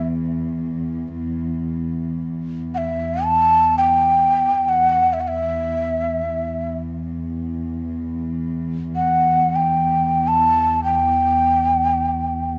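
Heard in a moderate recital-hall reverb, this hypnotic, longing fragment of an Arabic maqam ensemble in E minor unfolds in free time, with a breathy, hollow end-blown ney carrying the melody between E5 and A5 with vibrato and a crisp attack, above a close, intimate cello section that holds a soft-attacked, sul tasto drone on E2 with light vibrato, both parts sitting up front from 0.0 to 12.6 seconds.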